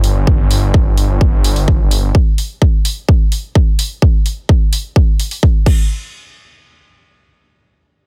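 Emotional and anthemic, this short cut from a festival progressive house track opens with a thick, detuned sawtooth bass in the low register, lush with chorus and pumping against the sidechain until it stops at 2.1 seconds, alongside a pop drum kit of crash cymbal and bright hi-hats. An up-front, overdriven electronic kick punches in at 0.3 seconds, layered with the kit. Both drum parts drop out at 5.8 seconds as the piece moves into a new section, and the mix stays dry.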